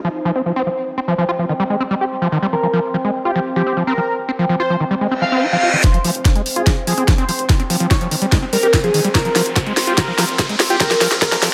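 A squelchy, gritty acid bass riff sits up front from the first moment, its resonant sawtooth tone distorted and fed into dub echo, with a filter sweep on it during the build-up from 5.8 seconds. This excerpt from a longer psychedelic trance piece feels alien and psychedelic in a straight 4/4. Beneath the bass, a slow-attack sawtooth drone with moving overtones holds sustained chords through chorus and its own reverb, and both parts pump with sidechain compression. At 2.5 seconds a thick, detuned unison lead enters with a bold, wave-folded, ring-modulated melody that carries vibrato, phaser and dub echo. A reverse cymbal in the background leads into the second section, where an overdriven, knocking electronic kick and a drum kit with a cracking snare and bright hats come in up front, playing a fill under a riser and a filter sweep, while a round, deep analog bass enters very quietly, all within a moderate digital room reverb.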